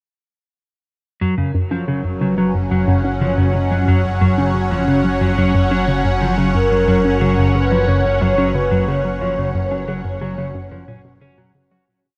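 Cosmic and luminous, this short piece of ambient, sequencer-driven space music moves at 90 BPM in F# major, where a hollow, bouncy square pluck repeats an 8-step riff under a filter sweep, a clean, dark electric guitar traces a 9-step arpeggio loop drifting against the bar through shimmer reverb and tape echo, a thick, bright detuned unison pad holds slowly shifting chords with chorus and phaser, an analog drone enters at 2.4 seconds to sustain a warbling root bass, and a mellow, round horn-like synth lead with vibrato and 12-bit sampler grit calls out short motifs, all set in a huge, wet reverb before a fade-out from 8.3 seconds.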